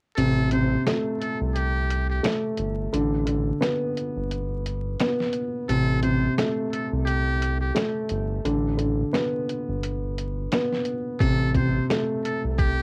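Boom-bap hip-hop in A minor at 87 BPM with a swung 16th feel, this tough, moody excerpt pairs a buzzy, breathy trumpet with metal mute on the melody, treated with cassette tape and analog delay, against a dark, woody upright piano with audible action noise and a round, deep analog bass. The gritty, pitched-down sampler-style drums keep the kick muted until 11.2 seconds, leaving hi-hat and snare up front over chords that alternate between Am7 and Gadd9 before settling on Am. The dry home-cassette recording carries vinyl crackle throughout.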